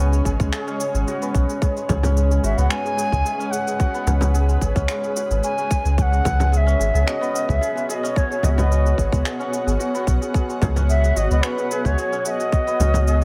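A breathy, reedy ney carries the melody from the opening over a cloudy, evolving granular pad with sidechain pumping, shimmering santur arpeggios touched with tape echo, and a deep, round sub bass, as electronic shaker and finger snaps arrive at 0.1 seconds, an overdriven, tight electronic kick at 0.3 seconds, and a close, dry frame drum at 1.9 seconds in this mystical organic downtempo excerpt at 110 BPM.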